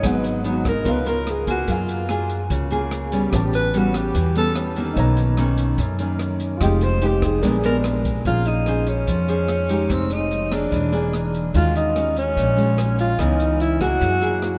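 Melancholic and wistful, this bossa nova excerpt at 146 BPM sets a breathy, scooped alto saxophone solo over fingerpicked nylon-string guitar, woody pizzicato upright bass, an intimate background piano that drops out at 8.3 s as the music settles into Bb minor, a dark, boomy-kicked jazz drum kit with hi-hat and rim click, and a grainy tube shaker, all washed in the long echo of a vast cathedral.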